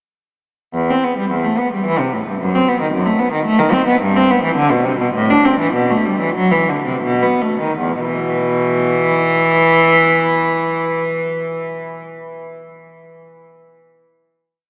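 A lone bowed cello with a rich, reedy gut-string tone sits up front, playing period-style broken-chord figuration across the strings in a solemn, introspective baroque-style suite movement in E minor and 3/4. The rubato tempo moves between 77 and 114 BPM and slows from 3.2 to 7.8 seconds, where the harmony settles from B7 onto a held E5 final chord that carries the piece to its close at 12.0 seconds. A 5.6-second cathedral reverb places the playing in a vast, echoing space, heard through a small-speaker sound.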